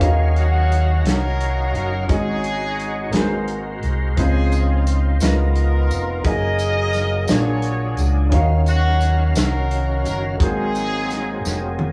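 A gritty tonewheel organ through a slow rotary speaker with chorus vibrato, a woody upright piano in the background, a round, punchy fingered electric bass up front and an acoustic country drum kit with a tight kick open this jubilant slow gospel passage in 6/8, with a clear but distant, loose horn section carrying the melody from 0.4 seconds, a jingly tambourine joining in the background from 4.5 seconds over lush chords such as Ebm9, Dbmaj9 and Bb7alt, and a drum fill at 11.4 seconds closing this live, small-room performance.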